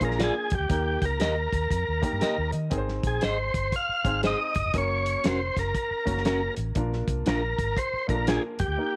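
A tonewheel organ with a fast rotary speaker and audible key click carries the melody up front from the start of this joyful, uptempo 1960s-style soul excerpt at 119 BPM with a swung 4/4 feel, over a dry, muffled soul drum kit with a tight kick, a round, foam-muted fingered electric bass, a clear but worn grand piano that plays a fill from 1.7 to 2.7 seconds, and bright, picked clean electric guitar stabs entering at 0.2 seconds, all set in light reverb and studio ambience as the chords move from Bb7 through Eb, Ab and Gb back to Bb.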